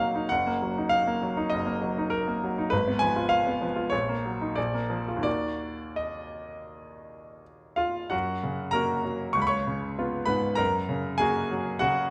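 A bright, polished grand piano sits up front in a moderate recital hall reverb, its short-sustained notes sounding with a brilliant edge. This brooding, passionate romantic character piece for solo piano moves in a rubato 4/4 at roughly 81-104 BPM, spanning Gb1 to C#6 and circling dark Eb minor harmonies such as Ebm/Gb, Fdim/Ab and Bb. At 8.1 s the music turns to F# major, passing through C#7 before settling back on F# until the fragment breaks off at 12.1 s.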